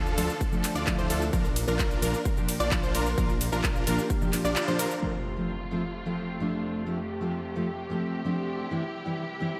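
A dark, woody string section holds sustained chords from the start as a bright unison pluck arpeggiates, a huge, airy supersaw riff with cassette-tape grit plays, a thick, saturated saw bass rumbles, and a punchy, up-front kick joins metallic-hatted dance drums with handclaps, ride and shaker in this euphoric, uplifting festival progressive house excerpt at 130 BPM in F major. The melodic parts pump with sidechain through a dreamy plate reverb, while a dark fingerpicked steel-string acoustic guitar carries on after the drop ends at 5.0 seconds, when an electronic impact lands over the strings.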